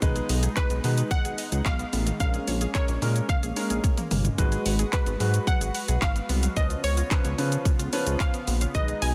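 Driving and energetic, this dance-pop excerpt rides on a punchy house drum kit of handclaps, hi-hat, kick, shaker and toms with a fill at 3.8 seconds. Over it sit a glossy, detuned synth bass up front, a clear grand piano, a smooth analog pad and a woody, mallet-like synth pluck playing arpeggios in the background, these four all pumping with sidechain, while a crystalline wavetable pluck enters at 0.6 seconds with the melody through chorus and digital delay over a dense, heavily limited master.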